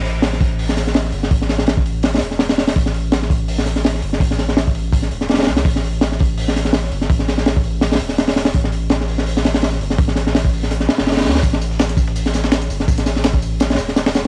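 Dark and frenetic, this drum and bass and jungle excerpt at 166 BPM with a light swing rides a deep, thick saturated sub bass and an up-front, crunchy breakbeat kit with a punchy kick, high-tuned snare and rolled-off, tape-gritty top, while a reverse cymbal sweeps in the background at 10.8 seconds and a dusty, compressed soul sampler-style kit with hi-hat, snare and tambourine slips in behind from 11.4 seconds, all set in a small room with a home cassette recording feel and vinyl crackle.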